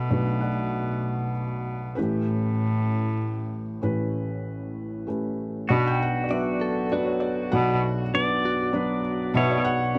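Closely miked and nearly dry, this heartbroken, intimate acoustic folk-pop ballad in 3/4 sets a soft, felt-muted upright piano carrying the melody over a reedy, bowed gut-string cello bass, both up front, before a bright pedal steel guitar enters at 5.7 seconds with fingerpicked slide lines and volume swells, and a scooped, direct-recorded clean electric guitar adds picked arpeggios with tremolo in the background from 6.3 seconds.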